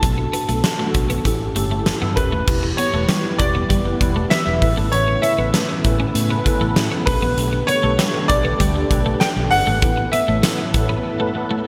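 1980s-style pop at 98 BPM, uplifting and nostalgic, where a clear baby grand piano carries the melody with chorus and delay over a mellow tine electric piano, a dark, foam-muted fingered bass, a huge up-front arena kit with fat gated-reverb snare, boomy kick, bright cymbals and tambourine, a warm, picked twelve-string electric guitar riff tucked in the background, and a silky string machine whose slow-attack chords enter at 2.5 s, all in a bright digital hall production moving from Bm7 through Em, Aadd9 and Gadd9 to an Asus2 break at 11.0 s in this cut from a longer piece.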